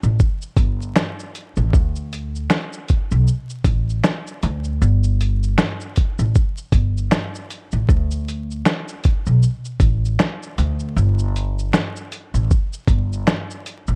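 A dry, close-sounding recording with a layer of vinyl crackle opens this short cut from a longer lo-fi hip hop piece, carrying a nostalgic, cosy mood. At 78 BPM in 4/4, the groove has a gentle swing on the sixteenth notes. An upright bass, plucked pizzicato on gut strings, sits up front with a woody, dark tone, moving between G1 and D2 for the full 14.0 seconds. Alongside it, a sampler-style drum kit, compressed, pitched down and muffled, supplies a thumpy kick, a medium-tuned snare, hi-hat, shaker and finger snaps. The two parts share the foreground throughout, giving the passage an intimate, homespun feel.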